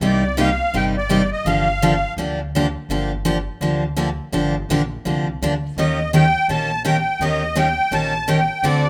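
Acoustic string swing in the jazz manouche style, this fiery, bittersweet fragment cut from a longer piece moves at a brisk 167 BPM in 4/4 with a swung eighth-note feel and tuning set slightly low at A4 = 436 Hz. A reedy musette accordion carries the melody up front, its shimmering musette tuning bathed in plate reverb, sounding from the start, dropping out at 2.1 seconds and returning at 5.8 seconds. Beneath it, a bright, full-bodied jumbo steel-string guitar plays picked accompaniment throughout, its fresh strings crisp and an occasional finger squeak audible. An upright bass with gut strings supplies a woody, thumpy pizzicato foundation, dark and set well back in the balance. The harmony moves from Cm9 to Gm7 and then Eb7, and the whole sits in a wet small room with the rough character of a home demo mix.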